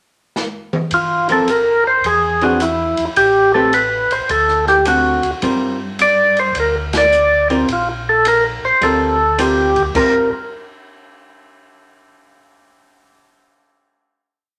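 A wet, large-studio reverb surrounds this short, bluesy soul jazz organ trio in G minor, swinging at 106 BPM, where a drum fill at 0.4 seconds rounds out a pickup bar before the up-front, percussive tonewheel organ enters at 0.9 seconds with a motif-based melody, its key click and slow rotary speaker giving it a full, clean bite. Beneath it, a second, mellow tonewheel organ carries a round, two-feel bass line with chorus vibrato, while a dark, compressed hollow-body archtop guitar adds syncopated comping in three- and four-note chord shapes. An airy acoustic drum kit with dark cymbals and a boomy kick keeps a ride cymbal pattern, the band hits an accent at 6.8 seconds, and the piece settles on a final Gm7 chord.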